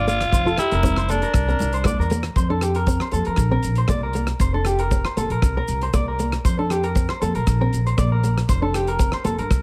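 A carefree, sunny highlife guitar band piece in F major moves at 118 BPM in a straight 4/4, cut from a longer performance. A raspy, gritty tenor saxophone carries the melody up front for only the opening 2.1 seconds, while congas ring in the background until 2.2 seconds. An electric guitar through a small old amp plays twangy, slightly broken-up arpeggios with tape echo, and a fingerpicked, boxy parlour steel-string acoustic guitar adds accompaniment beneath it. A woody, dark pizzicato upright bass sits up front, with a damped 70s drum kit supplying hi-hat, tight kick and rim click under a rolled-off top, and grainy maracas in the background. The chords cycle through Fsus2, Csus2 and Bb in a small room with light reverb.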